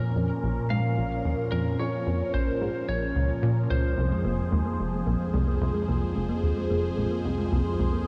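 A punchy, funky analog bass sits up front in this short cut from a mysterious, cosmic piece of sequencer-driven ambient space music in Bb minor at 110 BPM, riffing through lush chorus and analog delay under a swirling, full-bodied phased pad that sustains Bbmadd9 and then Fm chords. A bright, twangy, slightly broken-up electric lead guitar carries the melody through analog delay until 4.5 seconds, and a round, tine-like, warbling thumb-piano-like synth pluck enters with gentle arpeggios at 4.1 seconds. Moderate plate reverb soaks the mix in a dreamy haze.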